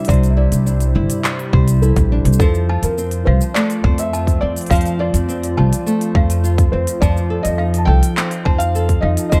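A straight four-four pulse comes from a tight electronic kick and an organic electronic kit of handclaps, shaker and crisp hi-hats, both re-recorded in a large room. A woody pizzicato upright bass with steel strings sits up front from 0.1 seconds. This folktronica passage feels warm and playful, moving from Cadd9 to F and then F7. A felt-muted upright piano carries the melody with a soft, intimate tone under thick felt and tape echo, while a small, fingerpicked nylon-string guitar plays arpeggios, also through tape echo. Beneath them a warbling, nostalgic, lo-fi pad holds sustained chords in the background with chorus and its own reverb, and from 2.7 seconds a clanky, bell-like toy piano, slightly out of tune, adds a quiet second line with tape echo. The production is dark and warm, set in a small room ambience.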